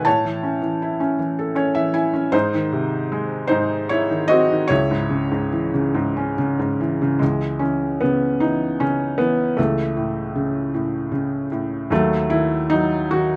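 A felt-muted upright piano opens this short classical fragment alone, its soft, intimate tone sitting up front with the thin felt and the audible clicks of the action close at hand. The mood is melancholic and wistful, unfolding in 6/8 with a free, rubato pulse. Early on, between 1.2 and 2.3 seconds, the piano adds a brief fill. The harmony moves from A through G# to C# minor, and around 7.2 seconds the music passes into a second section that touches A over C# and closes on a diminished chord. The playing spans from deep bass to the upper middle of the keyboard, and a light reverb lends the mellow sound a little air as it breaks off, cut from a longer piece.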